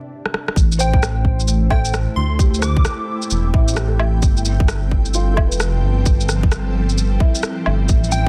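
A soft, intimate felt-muted upright piano opens this rainy, nocturnal future garage excerpt in A minor, with tape echo and sidechain pumping, as a brief electronic rim click, shaker and woodblock fill leads into a tight, up-front kick and a deep, rumbling detuned saw bass with tube saturation at 0.6 seconds. At 131 BPM with a swung 16th-note feel, a punchy, catchy unison lead with tape echo sings a high melody until 3.3 seconds. An ethereal, airy pad with chorus, phaser and reverb drifts over Am7 and G7sus4 chords, all inside a dense, heavily limited master dusted with vinyl crackle.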